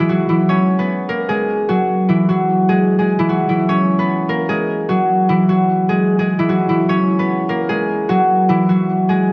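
Eerie and brooding, this short hip hop clip moves at 150 BPM in 4/4 with a half-time feel, tuned slightly sharp to A4 = 445 Hz. A solo concert harp, fingerpicked and up front, plays for the full 9.3 seconds between E3 and C#5, its ringing acoustic tone shaded by a low-pass filter and a digital delay within light reverb. The harmony cycles through F#add9, Eadd9, G#m and E before returning to F#add9 and Eadd9.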